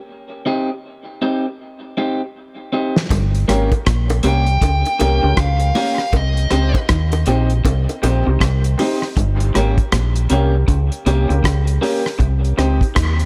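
A hypnotic, deep dub reggae groove at 79 BPM in 4/4 with swung 16ths opens on a slightly broken-up, compressed electric guitar accompaniment trailing dub echo, joined by a drum fill before the full band enters at 3.1 seconds, moving between C minor and G diminished. A cloth-damped, thuddy kit with a fat snare and tight kick sits up front beside a round, deep fingered bass. A woody, slightly detuned upright piano stabs through dub echo, a lo-fi, twangy guitar riff murmurs far back, tight high-tuned bongos tap in the background until 9.0 seconds, and a dark, overdriven lead guitar melody drifts through echo from 4.3 seconds, all in a small, lightly reverberant room.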